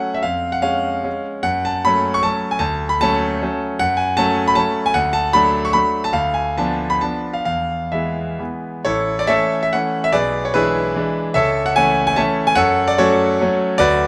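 Proud and rustic, this short romantic-era classical piece, cut from a longer work, is a triple-time dance with dotted rhythms and a flexible rubato feel, played by a solo concert grand piano whose brilliant, up-front tone pairs a smooth, vintage sheen with a deep bass, heard through close, detailed microphones in a concert hall with moderate reverb, its harmony turning to a new section at 8.9 seconds.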